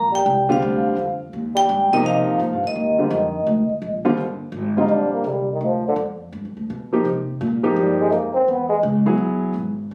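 A veiled, breathy cup-muted trombone, which plays a second line from the start, takes a solo from 4.2 s in this sophisticated, swinging excerpt of small-group swing and bop at 168 BPM in Eb major, after a bright, ringing vibraphone carries the melody with motor vibrato and plate reverb until 3.8 s, all over a woody, thumpy pizzicato upright bass and an intimate grand piano with audible action noise that enters at 0.5 s, captured on a phone in a club-like room.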